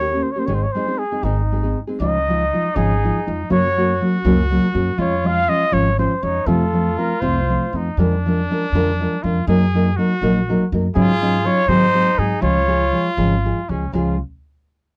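A breathy, mellow trumpet opens this romantic, festive mariachi excerpt in Db major, singing the melody with light vibrato and scooped, jazz-inflected notes over dark, fingerpicked nylon-string guitar and woody pizzicato upright bass, all moving in a rubato 6/8 at around 80 BPM. At 2.0 seconds a second trumpet with a vintage, classical tone enters quietly beneath on a supporting line, while the lead drops out at 7.8 seconds and returns briefly at 11.0 before the chords settle home on Db. The close, dry 1970s-style studio sound carries light reverb and keeps the full-bodied guitar and lead trumpet up front.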